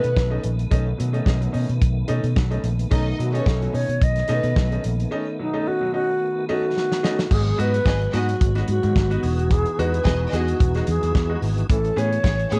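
A dark, warm small-room sound frames this driving, glamorous disco excerpt at 109 BPM in a straight 4/4. Up front, a close-miked alto flute carries the melody with a pure, tongued tone and vibrato, trailed by tape echo, while a lush bowed string section with smooth vibrato sings a second line. A bright, somewhat worn grand piano supplies accompaniment, and a tonewheel organ sits in the background holding full sustained chords, lightly overdriven with chorus vibrato and a slow rotary speaker. The punchy, amped fingered electric bass is pushed forward alongside an acoustic soul drum kit with a tight kick, a medium-tuned snare, hi-hat, and crash cymbals with a rolled-off top. The first section rests on B7, and a drum fill at 6.8 seconds leads into the second section at 7.3 seconds, where the harmony moves through G#m7 and Emaj9 to Amaj7.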